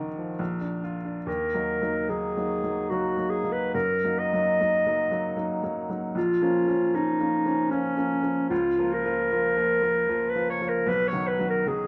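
Melancholic and solemn, this excerpt from a longer romantic classical duo moves in a rubato triple metre as a clear, intimate baby grand piano with audible action noise and long sustain opens alone before a warm, distant clarinet enters at 1.3 seconds to carry the melody up front, with both set in the roomy glow of a large studio.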